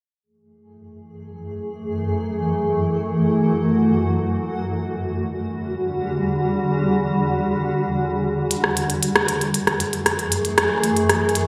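In free time, this intricate, cerebral IDM excerpt opens on a bright, cloudy granular pad that enters at 1.4 s with slow-attack, blurred sustained chords drifting from F#m9 to Em9 and back. At 8.5 s a clicky, tape-tinged electronic drum kit arrives up front with hi-hat and rim click, treated with gated reverb and delay. The lush hall reverb and bright 1980s-style digital production give the whole piece a cerebral, shimmering sheen.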